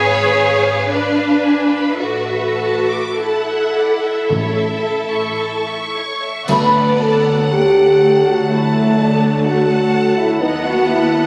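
Warm and lyrical, this slow, rubato romantic orchestral passage in D major, cut from a longer piece at 50-64 BPM in 4/4, opens with two rich, expressive violin lines over lush violas, distant cellos and focused double basses; round soft-mallet timpani enter at 4.3 s, and at 6.5 s an accented arrival brings prominent dark, roomy French horns alongside airy, hollow flutes, a punchy clarinet, a shadowy bassoon, very quiet clear trombones and close, dry cymbals and concert bass drum in the background, the whole set in a wet scoring-stage reverb with a compressed, phone-captured room sound.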